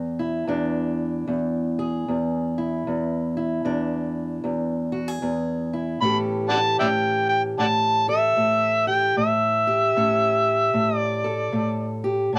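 An overdriven, amplified harmonica takes the lead from 6.0 seconds, its gritty tone carrying vibrato, scooped notes and tongue slaps in a jazz-inflected solo that sits up front with a plate reverb. This short cut from a longer acoustic country blues piece has a laid-back mood at 76 BPM in 4/4, with a swung eighth-note feel. A fingerpicked steel-string acoustic guitar opens the recording on its own, its dark, boxy parlour sound also placed up front as accompaniment. The harmony moves from E7 to A7 at 6.0 seconds, just as the harmonica arrives. Both parts play on until the recording stops at 12.4 seconds, set in a moderate small room.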